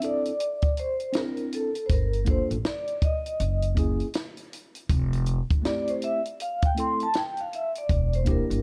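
Jazz-hop at 80 BPM with a 16th-note swing and a nocturnal, mellow mood, this short excerpt features a ringing vibraphone played with soft mallets and medium motor vibrato soloing over a clean tine electric piano heard through its built-in speakers and a dry, compact cocktail kit with a punchy kick and high-tuned snare, while a woody, thumpy pizzicato upright bass with gut strings enters at 1.9 seconds, all moving through extended chords from Bbmaj9#11 to Em7b5 in a dark, close production with little reverb.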